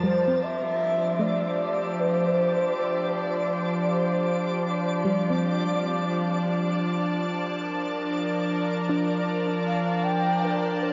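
An evolving wavetable pad sits up front, its full-bodied, morphing chords warbling with a vintage character through chorus and built-in reverb, moving from F6 to Gm7/F at 6.2 seconds in this luminous, weightless ambient passage in F major at 78 BPM. A breathy, mellow shakuhachi carries the melody from 0.1 seconds, distant and expressive with vibrato and a chiffy attack, trailed by diffuse ambient delay, while a very quiet, dark pluck traces soft, detuned arpeggios and a bright granular texture twinkles high above. The whole sits in a shimmering reverb with an 8.6-second tail and the worn, pitch-drifting haze of old cassette tape, dulled above 7.5 kHz.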